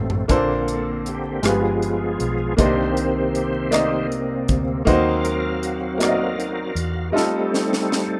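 A reedy tonewheel organ with key click and slow rotary shimmer takes the solo over woody upright piano chords, a round, dark hollow-body bass, a crisp fusion drum kit with a high-tuned snare and fills at the start and from 7.1 s, and close, dry group handclaps from 1.5 to 6.4 s, giving this dry, rough home-demo slow gospel excerpt in 6/8 a jubilant yet reverent glow as the chords move from Bbmaj9 through Cm9 and Ebm6 to F9.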